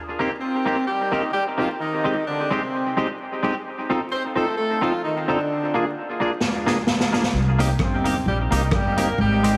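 A tight horn section carries the melody up front in octaves, its light vibrato and smooth top lending a cheerful lift to this joyful ska fragment at 130 BPM with a swung eighth-note feel. Twangy, bright electric guitar and a fat, lightly overdriven tonewheel organ with percussive stabs and a slow rotary speaker fill out the accompaniment, all three soaked in dub echo as the chords move from Eb6 through Abmaj7, F7 and Bb7 to Cm7. A gritty, punchy garage drum kit bursts in with a fill at 6.4 seconds, and a woody pizzicato upright bass follows at 7.3 seconds, the whole mix squeezed into a heavily compressed radio sound with vinyl crackle.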